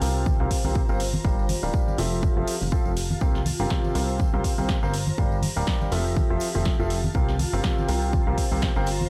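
Piano house at 122 BPM in C mixolydian with a swung sixteenth feel, this uplifting, euphoric passage cut from a longer piece sets a clear concert grand piano riff, roughened by vintage 12-bit sampler grit and carrying filtering, delay and sidechain pumping, over a plucky, wave-folded analog bass, both cycling through C7sus4, Gm7 and Fmaj7. A punchy analog drum machine supplies hi-hat and snare, tambourine and congas sit close yet in the background, and a tape-warm layered electronic kick enters at 0.3 seconds as the most prominent part. Behind them a cloudy, evolving granular pad with slow attack and built-in reverb breathes with the sidechain, all set in a digital ambience.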